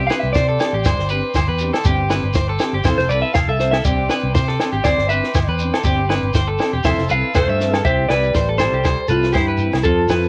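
A lightly reverberant home cassette recording of a danceable, carefree highlife guitar band, cut from a longer piece, where a dark, clean semi-hollow electric guitar solos the melody until 7.8 seconds over twangy, slightly broken-up guitar arpeggios with lush chorus and analog delay, a fingered guitar with ensemble chorus, a buzzy vintage combo organ holding background chords, a round, up-front fingered bass, a dry cocktail drum kit with a punchy kick and high-tuned snare, ringing agogo bells, a grainy shekere, and a very quiet, clear trombone adding a smooth second line from 7.4 seconds.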